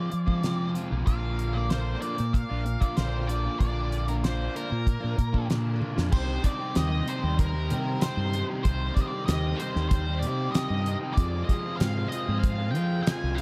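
An echo-heavy mix in a small room frames this dark, trippy psychedelic rock excerpt, where an octave-fuzz lead guitar with wah, distortion and tape echo carries the melody over a double-tracked, flanged riff from an overdriven semi-hollow guitar, a buzzy combo organ holding chords in the background, a round, punchy fingered electric bass up front, and a dry, damped 70s drum kit with a fat snare and tight kick whose fill at 5.8 seconds ushers the move from Fm and Bb to Cm at 6.1 seconds.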